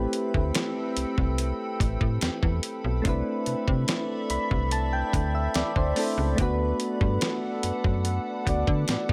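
Soft, round electric-piano-like synth keys with chorus, a glassy, ethereal FM pad washed in ensemble chorus and reverb, and a snappy, metallic slap-like FM bass open this late-night, longing contemporary R&B excerpt at 72 BPM, joined at 0.1 seconds by a gritty, compressed soul sampler-style kit with a thumpy kick and fat snare, while the keys add a fill from 3.9 to 6.4 seconds over chords moving from Am9 to Cmaj13 to Bm7/D in a dry, close mix.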